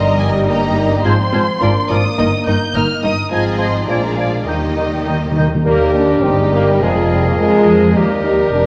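A quick, stormy classical-period movement for symphony orchestra in Eb major at 105 BPM in 2/4, cut from a longer piece, where a dark, woody violin section carries the melody over a bright solo clarinet, airy flutes and a lush second violin line, with a mellow bassoon, a very quiet viola section, roomy French horns holding sustained chords, a double bass and expressive cello section with portamento anchoring the bass, and hard-mallet timpani adding a fill at 4.5 seconds, all bathed in scoring-stage reverb and the warbling pitch drift of worn cassette tape.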